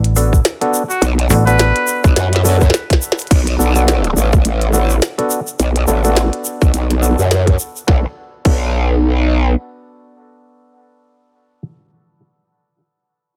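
A growling, saturated bass with chorus sits up front in this funky, gritty glitch hop cut, wobbling from 1.0 s under a filter sweep and taking over from a brief, snappy slap-like FM bass. A tight, layered electronic kick drives the beat alongside a glitchy overdriven kit of tiny snare, clicky hats, rim click and crash, with a drum fill leading into a new section at 3.3 s, while a grainy egg shaker adds close, dry texture. A mellow, stringy clav stabs through vintage 12-bit grit, sidechain pumping and dub echo, and a jazz-style trumpet with light vibrato and scooped notes offers a short solo phrase, all in a fairly dry mix.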